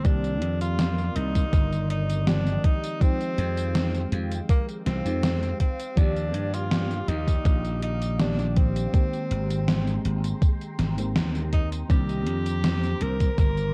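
A straight 4/4 groove anchors this faded, dreamy vaporwave fragment, cut from a longer piece. Up front, an overdriven, thumpy electronic kick sits beside a gated 80s digital drum machine whose hi-hat, tambourine and gated-reverb snare carry their own overdrive and small-room grit. A growly, punchy slap bass, bright and pushed through tube saturation, holds the low end in the foreground. Further back, a round, warbling FM electric piano with analog chorus and a faint noise layer moves through Cm9, Fm9, Ebmaj9 and Abmaj9 before returning to Cm9, while a silky string machine enters at 0.5 seconds with slow-attack pads washed in phaser and ensemble chorus. Over the top, a breathy, whispered tenor saxophone plays an intimate jazz-style melody with light vibrato and tape echo, all set in a dark digital ambience with a cassette-tape sheen.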